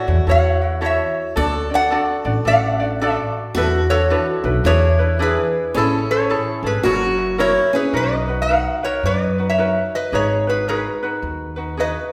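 A reverberant recital-hall ambience surrounds this languid, relaxed Hawaiian excerpt, cut from a longer piece, with an easy swung eighth-note feel. Up front, a metal-body resonator slide guitar carries the melody with a metallic, nasal tone, played with fingerpicks and slide across the upper-middle register. Beneath it, a boxy parlour steel-string acoustic guitar picks a second line until 7.9 s, while a light, fingerpicked ukulele supplies accompaniment throughout. A woody, thumpy gut-string upright bass, also up front, anchors the low end with pizzicato notes. The harmony drifts through chords like A6, E7sus4 and F#7 before a new section opens at 7.9 s on Bmaj7 and later G#m7.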